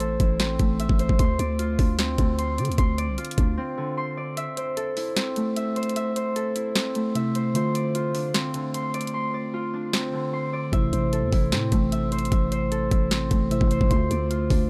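A half-time trap beat drives this menacing, hard-hitting hip hop excerpt, its knocking kick, sharp snare and bright hi-hats sitting up front, with the hats falling silent from 9.1 to 10.7 seconds. Thumb-plucked Celtic harp arpeggios ring through tape echo over A minor and D minor seventh chords, while a growling, buzzy 808-style bass sounds at the start and returns at 10.7 seconds. A mellow, clean tine electric piano joins as accompaniment at 7.1 seconds, heard through built-in speakers, and the dry mix keeps the parts close.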